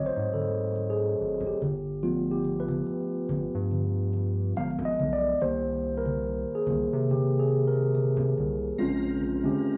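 A mellow, clean tine electric piano takes the lead from the start over a deep, round analog bass, with soft-handed, bright congas joining at 0.3 s in this soulful, late-night neo-soul R&B fragment at 71 BPM in 4/4 with a gentle sixteenth-note swing. The piano moves through dusky chords such as Ab7b9, G7b9 and Cm7, and at 8.8 s a fat, lightly overdriven tonewheel organ with key click, chorus vibrato and a slow rotary speaker adds sustained chords on Bbm9. Light reverb, studio ambience and a worn cassette-tape warble with drifting pitch give the sound a hazy, aged character.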